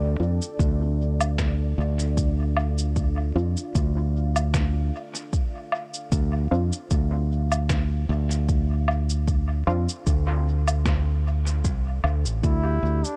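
Hazy and deep, this ambient dub excerpt in D minor moves at 76 BPM with a light swing, as a fingered electric bass sits up front beneath a detuned sawtooth pad, muted chord stabs with chorus and dub echo, a muffled, pitched-down shaker, woodblock and fat snare also sent through dub echo, and a tape-warm electronic kick, before a close-miked solo trombone enters at 12.4 seconds and a pure FM bell with phaser joins at 12.6 seconds.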